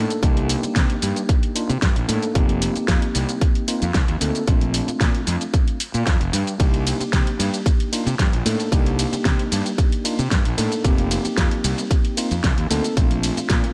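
A dry, echo-heavy mix carries this sensual, groovy nu-disco excerpt at 113 BPM in C dorian, where a punchy electronic kick sits up front beside a round, overdriven fuzz bass, while a pop drum kit with a fat snare, warm hats, ride cymbal and shaker shares dub echo with a mellow tine electric piano cycling through Cm7, F7sus4 and Bbmaj9.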